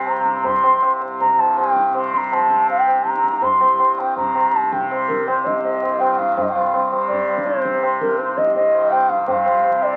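Solemn and longing, this brief excerpt of Hindustani classical music in raga Bhimpalasi on C moves at 163 BPM in a straight 4/4 and gradually speeds up, as a pure, expressive bamboo bansuri with vibrato and a crisp attack sings the melody up front from Bb4 to C6 over a shimmering, buzzing tanpura drone and low-tuned, ringing tabla, all heard through moderate studio reverb and the crackle of a very old 78 rpm record, with a shift to a new section at 6.4 seconds.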